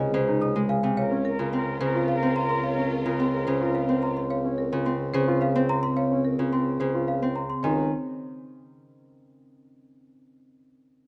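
A ringing, fingerpicked Celtic harp sits up front from the start of this propulsive, hypnotic minimalist classical passage in Db major at 108 BPM in 3/4, alongside a woody marimba melody, bell-like celesta arpeggios and a soft-attack bassoon holding the bass, with a dark grand piano adding arpeggios in the background, a mellow soprano saxophone second line and lush bowed strings sounding from 1.0 to 4.1 seconds, and the harp carrying on alone from 7.9 seconds under light reverb.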